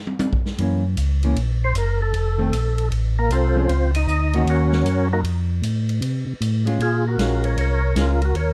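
A swung eighth-note groove in 4/4 drives this late-night, soulful soul jazz organ trio fragment, set in light reverb with a dark, warm production and a distant, roomy big-band drum kit of boomy kick, medium-tuned snare, hi-hat, ride cymbal and toms. From 0.6 seconds a mellow, round organ bass with chorus vibrato and slow rotary speaker sits up front, alongside a clean, fingered hollow-body electric guitar in accompaniment. At 1.6 seconds a fat, lightly overdriven percussive tonewheel organ takes the solo melody with key click and second-harmonic percussion, moving over Gb7, F, Bbm and Ebm7 before the Bbm7 that arrives at 6.8 seconds.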